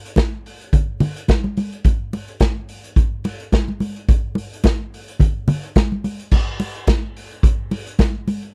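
Glamorous and danceable, this short disco cut swings its sixteenths lightly as an up-front vintage drum kit, with a punchy kick, a medium-tuned snare, hi-hat and a dark crash cymbal, sounds out from a small, pumping room with a rolled-off top; close, dry congas with a thick, high-tuned skin and a damped tone are played with soft hands, and a new section begins at 6.3 seconds.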